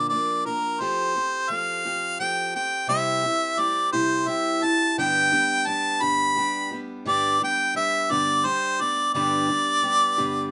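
This rough home demo sounds dull at the top, with its highs rolled off and a moderate small-room ambience around the instruments. The short fragment of slow rock moves in 6/8 at 58 BPM counted in dotted quarters, with an open-road, nostalgic mood. Up front, a clear harmonica carries the melody in a pop solo style with light vibrato, running through the full 10.5 seconds. Beneath it sits a picked steel-string parlour guitar, boxy and warm with fresh strings, its finger squeaks audible through a plate reverb. The guitar sits well below the harmonica as it moves through Bb, Fadd9, C and G. The phrase shifts into a new section at 7.1 seconds.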